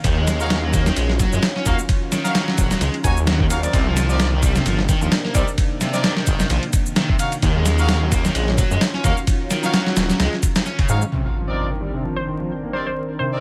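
A funky, raw breakbeat excerpt at 130 BPM with a 16th-note swing, built on a gritty, overdriven sampler-style drum kit with a thumpy kick and ride, a thick, menacing detuned saw bass up front, and a tape-warm shaker in the background, all over vinyl crackle and a dry sound. A dark, double-tracked overdriven guitar riff with dub echo and brilliant horn stabs ride over a swirling, airy phased pad that pumps against the beat, moving between Ebm9 and Cm9. Around 11 seconds the drums, bass and shaker drop out in turn as an electronic impact hits at 11.1 seconds, and a hollow, bouncy square pluck with a telephone-like tone briefly takes the melody at 12.2 seconds.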